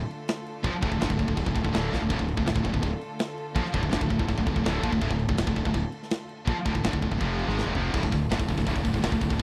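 An up-front metal drum kit, with its bright cymbals, medium-tuned snare and tight kick, drives this relentless, aggressive heavy metal passage cut from a longer piece, adding fills at 1.9 seconds and just before a new section at 7.9 seconds. From 0.6 seconds, three picked high-gain electric guitars (one heavy, one scooped, one double-tracked and very quiet) grind out a low riff over a round, dark fuzz bass that sits back in the mix. Beneath them, a very quiet bowed string section holds biting sustained chords with light vibrato from the start, and the dry, close sound recalls a 1970s studio.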